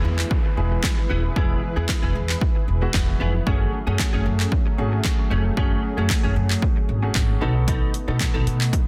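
A dense, heavily limited modern mix with light digital ambience opens this bittersweet yet energetic dance-pop fragment, cut from a longer piece and built on a straight four-beat pulse. Up front, a punchy analog drum machine enters at 0.2 seconds with dry, overdriven kick, snare, hi-hat and handclaps, while a woody, growly pizzicato upright bass with steel strings sits dark beneath it, pumping against the sidechain. A warm grand piano plays accompaniment, also pumping, and a clean, compressed electric guitar, recorded direct and picked, carries a riff through an ensemble chorus. In the background, a lush, thick sawtooth unison pad holds slow-attack chords with a detuned, vintage warble, a long release and its own chorus and sidechain pumping. A very quiet electronic downlifter drifts through the opening before ending at 3.5 seconds, just as the harmony shifts from E to F#madd9 and later settles on B7.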